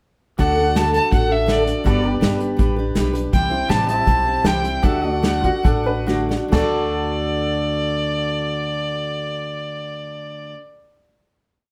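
Lightly reverberant and sunny, this short, easygoing honky-tonk and classic country piece sets a clear, focused fiddle melody of motif-based phrases over bright dreadnought strumming in open chord shapes, a woody, growly upright bass walking two-beat roots and fifths, a background pedal steel gliding through swelling chords, and a punchy acoustic kit played with bundle sticks in a country two groove; the band slows from 3.3 seconds, a slightly detuned upright piano slips in with blues licks at 5.4 seconds, and a drum fill leads into a final held chord at 6.5 seconds.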